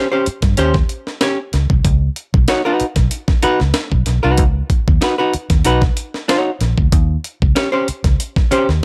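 A clean, hollow-bodied archtop guitar opens this playful funk excerpt, picking dark chords that move from Eb6 to Db9sus4 and back to Eb6 at 6.9 seconds, touched with plate reverb. From 0.3 seconds a round, punchy, foam-muted electric bass and a gritty, pitched-up breakbeat kit join in, the drums compressed and tape-toned with a thumpy kick, high-tuned snare and hi-hat. All three parts sit up front in a dry mix.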